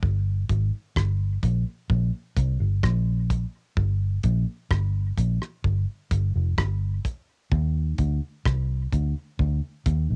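A straight, unhurried 4/4 dub reggae groove from a damped 70s drum kit, dry and up front with a tight kick, hi-hat and rim click, sits under a dark, round, foam-muted electric bass played with the fingers through an amp, giving this short cassette-recorded home excerpt a spacious, hypnotic mood in a nearly reverb-free room.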